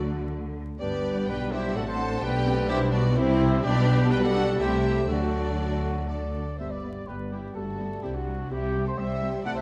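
A full classical-period orchestra opens together in a lively, cheerful G major movement in a quick, rubato 3/4 at 119-129 BPM: a focused, bowed violin section carries the melody over airy flutes and a lush second violin line, expressive violas accompany, mellow French horns hold sustained chords, tight trumpets add soft-attack stabs, and smooth cellos join up-front double basses on the bass line, within a dark, reverberant scoring-stage sound with vinyl crackle as the music moves into a new section at 6.6 seconds.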